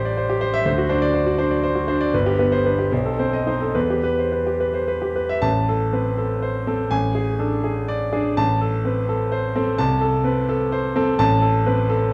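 This romantic classical character piece for solo piano has a bittersweet, brooding mood, unfolding in a rubato 6/8 at roughly 68-87 BPM in dotted quarters, moving from E minor to A minor at 5.4 s. The concert grand sits up front with a clear, smooth, vintage tone and deep bass, ranging from G1 to A5 as the harmony turns through Am7, D7, G and B7b9 before settling into Em and later lingering around Am and Asus4. A wet recital hall reverb and a dark production frame this brief excerpt, which ends at 12.1 s.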